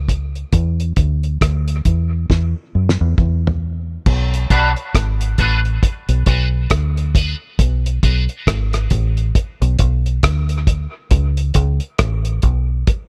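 Dub reggae at a slow 68 BPM in B dorian, hypnotic and deep, with a swung sixteenth feel in a small room. Round, foam-muted fingered bass and a cloth-damped drum kit with a fat snare, tight kick and dark cymbals sit up front, opening on a break with a drum fill from 2.3 seconds before the harmony settles on Bm at 4.1 seconds. A bright, twangy electric guitar at the edge of break-up, treated with chorus, high-pass filtering and dub echo, appears only from 4.5 to 8.2 seconds in this excerpt cut from a longer piece.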